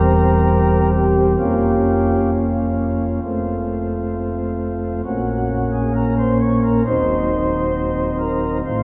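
A classical, chorale-style excerpt for solo pipe organ in Bb minor, dark and grave, moving at a rubato 66 BPM in 4/4 with tuning set at A4 = 437 Hz. The organ sits up front on soft flute stops with a tremulant and a romantic voicing, reaching from Eb1 to Db5 across a progression that passes through Bbm/F, Bbm9 and Cdim/Eb. A wet church reverb with a 3.8-second decay surrounds it, alongside a touch of small-room ambience, until the fragment breaks off at 8.8 seconds.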